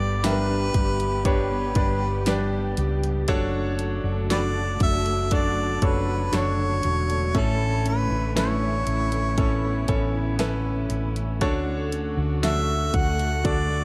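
A tender, heartfelt pop ballad at 59 BPM in D major opens with a warm, jazz-style harmonica singing the melody with light vibrato, scooped notes and tongue slaps, over a bright, polished concert grand piano, a round, punchy hollow-body electric bass held up front, and a full-bodied fingerpicked jumbo acoustic guitar playing arpeggios in the background. A veiled, muted string section sustains distant bowed chords beneath, and a produced pop drum kit with a punchy kick and fat snare comes in at 0.2 seconds. The harmony moves from G through Dmaj7/F# and A to Dmaj7, all set in a dark production with light reverb and small-room ambience, in this short passage cut from a longer piece.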